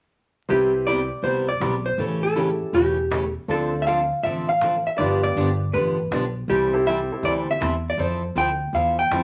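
A cheerful, swinging western swing excerpt at 160 BPM in C major opens at 0.5 seconds with a dark, clean hollow-body electric guitar carrying the melody up front over a clear upright piano, a full-bodied picked steel-string acoustic guitar and a thumpy pizzicato upright bass, joined at 0.9 seconds by a soft-handed cajon with faint snares, while the piano drops out at 7.6 seconds as the chords move from Cmaj7 through A7, Dm7, G7 and C6 to Fmaj7, all wrapped in studio reverb and vinyl crackle.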